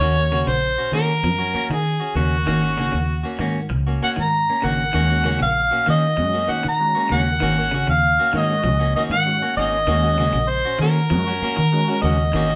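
A clear, close-miked harmonica sings an up-front pop-style lead with light vibrato and scooped notes over a round, foam-muted fingered bass, a twangy, slightly broken-up guitar picking background arpeggios and a clean hollow-body guitar adding picked stabs, before a full, percussive tonewheel organ with slow rotary speaker, light overdrive and chorus vibrato joins in the background at 4.9 s, all in a live-room take with a wet studio reverb, as this driving, hypnotic afrobeat fragment, cut from a longer piece, cycles between Ebm7 and Ab9sus4.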